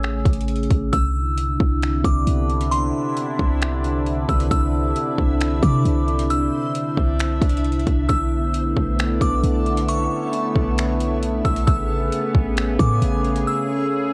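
This atmospheric cloud-rap excerpt sits at 134 BPM in 4/4 with a half-time feel, its trap drum kit of finger snaps, metallic hi-hat and a hard-clipped kick set up front with a tape-warmed, electronic sheen. Underneath, a clean 808-style bass built from a deep, boomy sine tone hits with a fast attack and decays darkly, holding its place until 13.4 seconds. A sawtooth pad, detuned and treated with chorus, sustains bright chords through Amaj7, Cmaj9, Bm11 and Amaj9, sweeping with a resonant filter swell and a slow attack. Above it, a crystalline FM bell carries the melody high in its register, its chorus and tape echo adding shimmer. From 1.4 seconds a reversed, granular texture of triangle tones swells softly in the background with its own reverb, and the drums drop out at 13.5 seconds for a brief break. The whole recording is wrapped in digital ambience and the warble of worn cassette tape, giving a blissful, dreamy haze.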